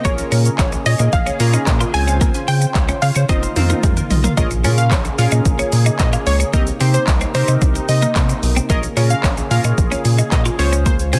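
Dance-pop in Bb dorian at 111 BPM, confident and driving, built on a punchy deep house kit of handclaps, dark hats, shaker and toms with a fill from 3.3 seconds, a round, up-front analog bass and a sidechain-pumped pad with slow, resonant filter swells, while glossy chorused retro synth keys and a bright, twangy twelve-string electric guitar riff play throughout, a lush unison pluck melody with delay and a very quiet crystalline wavetable arpeggio open the piece before a catchy plucky unison lead takes over at 4.4 seconds, all in a dense, heavily limited, fairly dry mix.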